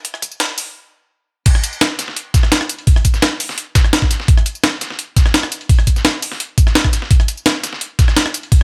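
A straight 4/4 drum and bass groove rolls at 170 BPM in this short cut from a longer piece, with a rolling, soulful mood carried entirely by drums. A pitched-up breakbeat kit opens the clip, sampled, compressed and tape-warm, with crash cymbal, hi-hat, rim click, tambourine and a high-tuned snare sitting up front. A thumpy, gritty electronic kick, also pitched up, compressed and tape-warm, joins almost at once and becomes the most prominent part. The opening build-up runs through a filter sweep, with a stop at 0.8 seconds before the drop lands at 1.5 seconds. At the drop, a dusty soul kit at natural pitch enters low in the mix, adding a fat snare and hi-hats thinned by high-pass filtering. The sound is dry, with little reverb and a high-pass filter shaping the whole mix.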